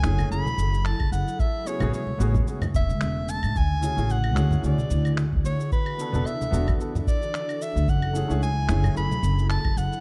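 A dark, warm studio production with studio reverb frames this 10-second excerpt of sunset chillout, smooth and warm at 111 BPM in 4/4 with a gentle sixteenth-note swing in A major. A soprano saxophone carries the jazz-style solo melody with vibrato and scooped notes, its line touched by delay. Beneath it, a concert grand piano with a deep low end plays accompaniment through a digital delay until 9.1 s, while an ethereal, airy pad of detuned sawtooth and triangle tones holds mellow chords with a slow attack, long release, ensemble chorus and its own reverb. An up-front pizzicato upright bass with a woody, dark steel-string tone anchors the low end, and a deep analog-style electronic kick, re-recorded in a small room, enters at 1.0 s. Gritty, tape-touched electronic finger snaps, shaker and claves sit in the mix alongside bright congas played with soft hands in the background. The harmony moves from F#m9 through Amaj13, Dmaj9#11 and E9sus4 before returning to F#m9.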